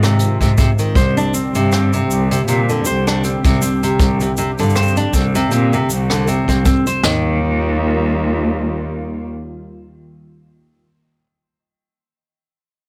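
A moderate studio reverb gives this short folktronica excerpt a natural, roomy sound, pastoral and hopeful in mood, moving at 79 BPM in 4/4 with a light swing on the sixteenths in E-flat major. Up front, a bright, full-bodied nylon-string guitar is fingerpicked in arpeggios, its fresh strings letting out the odd finger squeak through tape echo and plate reverb until 7.4 s. A bowed cello carries the bass line with vibrato and expressive portamento, sounding both up front and slightly distant, and holds on until 9.3 s. In the background, a smooth, warbling analog pad built from detuned sawtooth tones sustains chords with a slow attack, colored by chorus and plate reverb, and is the last part still sounding at 10.8 s. A jazz kit played with brushes adds hi-hat, rim click and shaker alongside a boomy kick, a high-tuned snare, toms and a dark splash cymbal. The harmony moves from Ab6 to Csus2 and then settles on Ebadd9 as the second section begins at 7.0 s.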